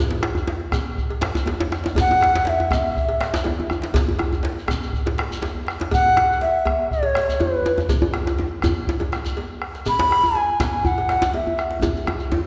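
Two djembes open this festive, powerful West African drum ensemble at 0.1 s, one warm and struck with hard hands, the other medium-tuned, soft-handed and up front, joined moments later by a dark, deep bombo, a metallic cowbell set in the background and a grainy, vintage-sounding shekere, all moving at a straight 122 BPM in 4/4. At 2.0 s a bright, airy bass bansuri takes the melody in E major pentatonic, its reedy bamboo tone tongued and colored with vibrato, sitting forward in a wet, church-like reverb. A drum fill breaks in at 5.6 s, and another closes this clip, cut from a longer piece.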